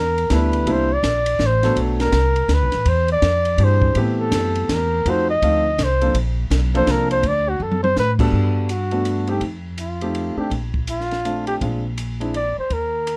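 Relaxed and sophisticated, this small-group swing and bop jazz excerpt at 165 BPM in 3/4 features an up-front flugelhorn soloing with light vibrato and scooped notes over woody pizzicato upright bass, a natural-sounding grand piano entering at 0.3 seconds, and a compact cocktail drum kit with dark cymbals, a high-tuned snare and punchy kick that plays a fill at 7.6 seconds before the harmony moves to Gmaj9 at 8.3 seconds, all set in light reverb.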